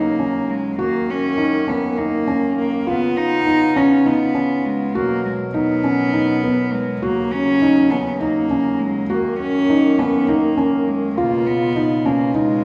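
From the opening moment a felt-muted upright piano's soft, intimate arpeggios, with its action noise audible, sit up front beside a close, rich gut-string cello bowing a pensive period-style melody, while a hand-pumped harmonium holds dark, breathing, nasal chords beneath, all moving hypnotically in 7/8 at 202 eighth-note beats per minute through an Ebm7, Gb6, Db7 and Bmaj13 cycle, heard from further back in a reverberant recital hall in this passage cut from a longer contemporary chamber piece.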